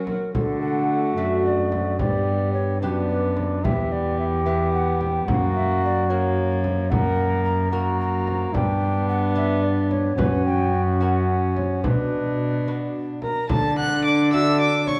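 Rustic and courtly, this renaissance-style consort dance moves at 73 BPM in a straight 6/8, cut from a longer piece. A hollow, airy tenor recorder with a woody chiff carries the melody while a gut-strung violin with light vibrato weaves a second line, a brilliant, distant trombone and a very quiet, delicate fingerpicked lute fill in the accompaniment, and a rich, nasal cello anchors the bass up front. A deep frame drum enters at 0.1 seconds. The moderate reverb of a recital hall gives the dark production its glow as the harmony travels from D through F# and settles on B minor before returning to D at 13.5 seconds.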